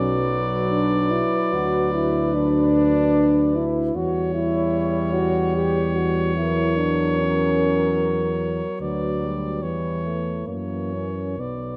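A clear flugelhorn carries the melody in this elegiac, yearning brass band hymn, cut from a longer piece, its line staying within a narrow span between C#5 and D5. Beneath it, a dark French horn section with light vibrato sounds distant and roomy as it shapes a second line, while a mellow euphonium and a close-miked trombone set in the background fill out the accompaniment. A dark, punchy, up-front tuba anchors the bass. Set in B minor and 3/4 at a rubato pace of roughly 64-76 BPM, the harmony moves from Bm through diminished and half-diminished chords toward a closing F#7. All five parts play together across the full 11.8 seconds, held in a moderate recital hall reverb with a 1.6-second decay.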